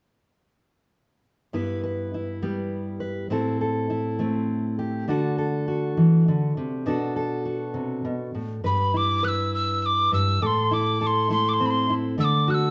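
Fingerpicked steel-string acoustic guitar opens this gentle acoustic folk excerpt in G major at 68 BPM in a straight 6/8, its full-bodied jumbo tone up front over G6, Am, D and Bm7 chords, before a breathy, mellow tin whistle with a crisp, chiffy attack and vibrato joins at 8.7 seconds to carry the melody high above, both parts played live in one room and bathed in wet stone reverb.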